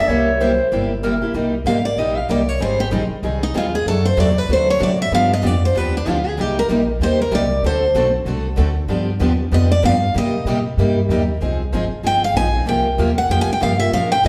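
Drenched in a large studio's reverb with the band playing live in one room, this fiery, swinging jazz manouche excerpt in C minor at 191 BPM opens with a raspy, growling clarinet as a second line beneath a bright, up-front steel-string guitar with finger squeak. The clarinet drops out at 1.3 s, when that guitar takes a solo over a boxy parlour guitar, a dreadnought guitar in the background and a woody, thumpy pizzicato upright bass, moving through chords such as Abmaj7, D7, G7 and Cm7.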